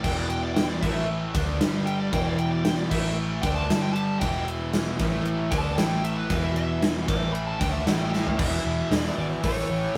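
Heavy and menacing, this hard rock passage from a longer piece sets a bluesy overdriven lead guitar soloing high above the band through the opening 8.4 seconds, its tone warm and distorted. Beneath it, a distorted electric guitar sits in the background with a quieter cranked stack guitar and a double-tracked overdriven electric guitar, all three playing a power-chord riff, while a dark, round, foam-muted picked bass adds punch. A gated 80s drum kit sits up front in a bright stone room, its crash and ride cymbals bright and its kick punchy, throwing in a fill at 8.1 seconds, all caught in a rough rehearsal-room sound with moderate reverb.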